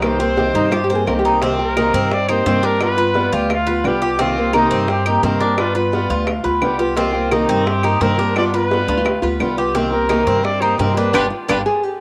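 A breathy, whispered trumpet sings an intimate, nostalgic melody over a boxy, fingerpicked old ladder-braced acoustic guitar, metallic double-string arpeggios from a Cuban tres, thumpy gut-string upright bass, round low-tuned bongos and dry woody claves in this excerpt from a longer Cuban son and guajira piece, a classical nylon-string guitar adding a brief second line at 0.4 seconds and again from 8.9 seconds before a band accent at 11.1 seconds, all heard through the soft haze of a home cassette recording with moderate spring reverb.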